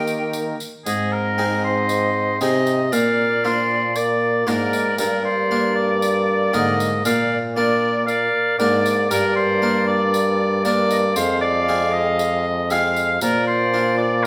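A soft-attacked, roomy oboe carries the melody from the first moment over a dark, lightly vibrato bassoon, a plucked, round single-strung harpsichord and a clear trombone bass, while an airy alto recorder with a crisp chiff adds a bright second line above. A jingly tambourine, set close, joins at 0.1 seconds and drops out at 13.5 seconds, giving this rustic yet courtly renaissance-style consort dance a steady, straight four-beat lilt. The excerpt sits in a moderate recital hall reverb, with the oboe up front.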